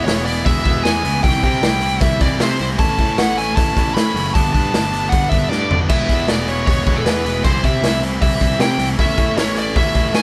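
The recording has the raw feel of a band playing live together in one room, with a light reverb around it. The drum kit sits up front, sounding gritty and saturated in a small, pumping room, with a boomy kick, a medium-tuned snare, crashes, hi-hat and toms, and a rolled-off top end; it comes in at 0.1 s and plays a short fill between 5.5 and 5.9 s. Underneath, a picked electric bass growls with overdriven fuzz, while a bright, overdriven electric guitar drives a riff through a cycle of E, C, A and G. Above them, a bluesy, distorted lead guitar carries the melody with a warm edge. This rebellious, upbeat punk rock passage in straight 4/4 is cut from a longer piece.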